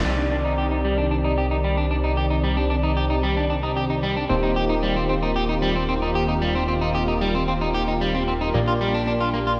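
Bathed in a lush, wet hall reverb, this bright 1980s-style digital production captures a dreamy, nostalgic stretch of synthwave cut from a longer piece, moving at 113 BPM in a straight 4/4. A brassy analog pad sustains chords through the whole passage, its detuned sawtooth tone carrying an airy noise layer, a filter swell, a moving notch, vibrato and a soft attack, all washed in chorus. Up front, an electric guitar at the edge of break-up picks dark arpeggios through a low-pass filter and digital delay, while a chorused synth bass adds a glossy, mellow pulse-wave and sawtooth pluck with ring modulation and a fast attack. Sitting in the background from 0.1 seconds, an overdriven tine electric piano plays barky, gritty stabs through a combo amp, shimmering with fast tremolo and digital delay. The harmony drifts from Cmadd9 to Eb6 at 4.3 seconds and settles on Bb6 at 8.5 seconds.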